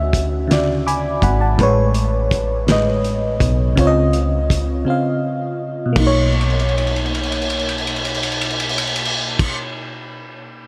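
Warm and intimate, this slow R&B passage in 6/8 moves at 55 BPM counted in dotted quarters, and it is cut from a longer piece. An up-front FM electric piano with a warbling, vintage tone and a faint noise layer carries the harmony from 0.0 s, drifting through lush major-ninth chords from Dmaj9 to Amaj9, C#maj9 and Bmaj9, and adding a short fill near 0.5 s. Beneath it, a woody fretless electric bass with a growly, hollow-body punch and subtle chorus holds the low end until 9.5 s. A cloth-damped, thuddy drum kit sits close and gritty, with a fat snare, tight kick and dark, muffled cymbals across crash, ride and hi-hat, rolling through a fill from 6.3 s to 9.4 s after a brief break. The whole mix is soaked in a huge ambient reverb with a long tail, giving the lo-fi, saturated drums and mellow keys a dreamy, hazy glow as the piano rings on alone to 10.7 s.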